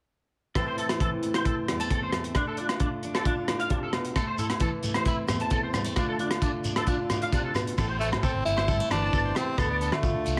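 Highlife guitar band music at 133 BPM in A minor, warm and danceable, this short excerpt rocks between A minor and D minor chords. From 0.6 seconds a fingerpicked jumbo steel-string acoustic guitar lays down full-bodied accompaniment, finger squeak audible, while an electric guitar at the edge of break-up picks twangy arpeggios colored by ensemble chorus and tape echo. A crunchy breakbeat drum kit sits up front with a punchy kick, dark cymbals, hi-hat and rim click, its saturated, gritty sound rolled off at the top, and ringing agogo bells chime in the background. A grainy, mellow shekere joins at 4.2 seconds, sounding distant as if in a large room. At 7.8 seconds the music moves into a new section as a round, dark fingered electric bass enters. At 8.0 seconds a raspy, growling tenor saxophone follows with a pop-style solo up front, bright with vibrato yet smooth on top. Light reverb and small room ambience wrap the ensemble.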